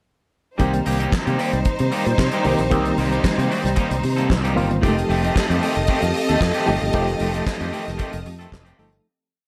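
Disco groove at 114 BPM in C dorian, danceable and sultry, where a dry, damped drum kit drives a four-on-the-floor beat with open hats on the off-beats and a fat snare layered with handclaps under gated reverb, a growly fingered bass plays a syncopated line with muted ghost notes and slides, a twangy, slightly broken-up electric guitar chops sixteenth notes, a barky, reedy electric piano with overdrive and fast tremolo pushes the chords with grace notes, and a clear string section bows swelling long notes, joined at 4.8 s by a bright, intense string pad in the background as the harmony moves from Cm7 to F9, before the whole piece fades out from 6.9 s.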